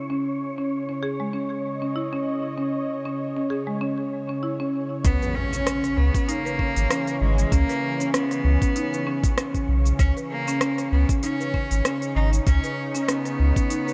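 A buzzing, woody marimba spins low-pass-filtered arpeggios through digital delay over a warbling, detuned analog pad and an airy, wind-like noise layer in this hypnotic organic downtempo excerpt, with electronic downlifter and impact effects at 0.0 and 5.0 seconds, when a biting, bowed cello melody, a deep, round sine sub bass, a gritty, thumpy kick and an electronic kit of smooth hi-hat, cabasa and rim click join under light digital ambience.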